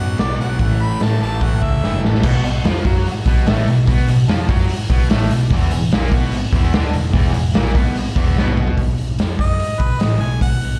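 Blues rock and southern rock from a power trio at 147 BPM, raunchy and gritty, caught live through a club PA with a roomy, close feel in this short excerpt. A double-tracked fuzz guitar riff rides over a growly, overdriven picked bass and a punchy, up-front garage drum kit with a rolled-off top, with drum fills at 1.4 and 8.4 seconds. A clear harmonica with light vibrato and scooped notes, treated with overdrive, slapback echo and plate reverb, opens the piece and returns for a short solo in the closing section after the guitar drops out.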